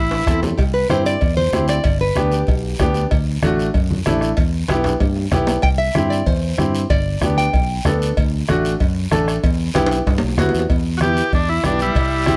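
Light reverb gives this short cut of a cumbia a natural sense of space, with the brilliant, woody upright piano, the fingerpicked nylon-string guitar and the vintage combo organ all sitting up front. The mood is passionate and danceable, moving at a brisk 190 BPM in straight 4/4 in E minor over a cycle of C, G, D and Em. A punchy fingered electric bass anchors the low end. A close bombo struck with a soft beater, low-tuned congas set back in a live room, ringing metal-shell timbales and cowbell, and a raspy, dry guiro fill out the percussion, with drum fills marking the turns. The bright nylon-string guitar carries the lead from 0.6 seconds, while the piano's long sustain supports it. Near the close, at 11.0 seconds, the buzzy, clean organ with light vibrato takes over the melody.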